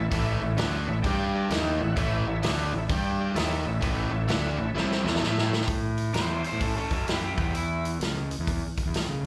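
Blues rock power trio with a southern rock streak, this raunchy, driving excerpt swings at 129 BPM in 4/4, moving from A mixolydian into A major at 5.7 s. A biting, double-tracked overdriven guitar plays a picked riff up front over a punchy, fuzz-laden fingered bass and a vintage acoustic drum kit with a medium-tuned snare, punchy kick and rolled-off top. Behind them, a thick, gritty tonewheel organ holds sustained chords through slow rotary speaker, chorus vibrato and plate reverb, adding a fill around 1.0 s before a drum fill leads into the second section. There the riff guitar and organ drop away, and a bright overdriven slide guitar takes a short melody at 6.1 s, touched with slapback echo and plate reverb, as the harmony moves toward E5. The whole band is heard live through a club PA, with the room's reverb giving it a loose, sweaty gig feel.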